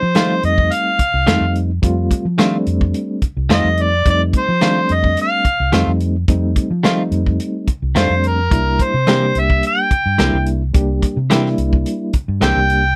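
A straight-eighth soul blues groove at 108 BPM in F mixolydian sets a soulful, gritty mood, with a mellow, overdriven harmonica singing scooped notes up front over a reedy electric piano with fast tremolo, a round, foam-muted fingered bass, a tight soul drum kit of hi-hat, kick and snare, and clean, compressed electric guitar stabs with tremolo, moving from F7 to C7 at 8.5 seconds in this short cut from a longer piece.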